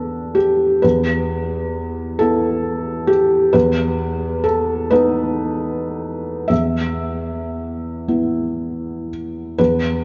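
A gentle 6/8 lilt is stretched and loosened by a free rubato, so the pulse breathes rather than ticks in this short fragment of neoclassical minimalist piano. A felt-muted upright piano plays alone throughout the ten seconds, ranging from E2 up to E5 with a soft, mellow, intimate tone, and the mechanical action noise of the instrument can be heard close up. The harmony barely moves, opening on Em7, settling onto a bare E5, shifting to B over an E bass at 3.5 seconds, and returning to E5 at 6.5 seconds. A long, wet plate reverb surrounds the recording, which sounds heard from further back in the room, its top end dulled and rounded. The mood is quiet and reflective, like a private moment of thought.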